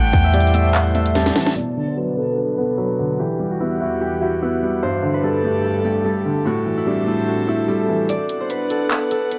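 A mellow, thumb-plucked concert harp carries the melody up front through this brooding, dark trap passage, cut from a longer piece, ringing over a half-time 147 BPM groove in B phrygian with a low-pass filter shading its tone. A dark concert grand piano with a deep low end plays the accompaniment under its own low-pass filter. Alongside them, an airy pad built from detuned triangle and sawtooth layers with a noise layer holds sustained chords, treated with chorus and filtering. The opening moments add a breathy, straight-toned, close-miked flute as a second line fed through digital delay, a clean sine 808 bass with a boomy, decaying body, and an electronic kit of hard-clipped kick, sharp snare, metallic hi-hat and handclaps, capped by a drum fill. From 1.6 seconds the drums and flute drop away and a filter sweep runs as the harp, piano and pad continue and the chords move through Bm, Emadd9, Gsus2 and Am7. 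The kit returns at 8.1 seconds with its kick muted, and the piano stops there while harp and pad carry on over Bm in a lightly reverberant space.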